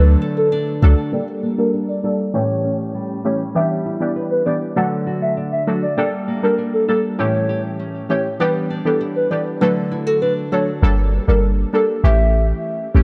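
A straight 4/4 dancehall groove at 99 BPM drives this bouncy, summery excerpt, where a hollow, woody clarinet-like synth lead with vibrato, chorus and delay carries the melody over punchy, nasal brass stabs and a fingerpicked nylon-string guitar's arpeggios, while a deep, boomy 808-style bass sounds briefly at the start and returns at 10.8 seconds, the whole mix sitting in a dark production with lush hall reverb and a filter sweep from 1.1 to 10.8 seconds.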